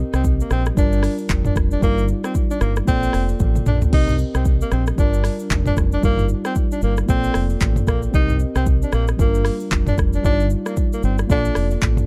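A breathy tenor saxophone carries the melody in a smooth, jazz-style solo with light vibrato, scooped notes and a touch of delay. Beneath it sit a mellow, clean tine electric piano, a round, punchy dub bass and an up-front deep house drum kit with a deep kick, handclaps, shaker, rim click and toms, plus a fill at 3.4 seconds. This hypnotic, sultry afrobeats groove in G minor moves at 114 BPM with a swung sixteenth feel, cycling Cm7, Gm7, Ebmaj7/G and Bbmaj7 in a dark, dry production taken from a longer piece.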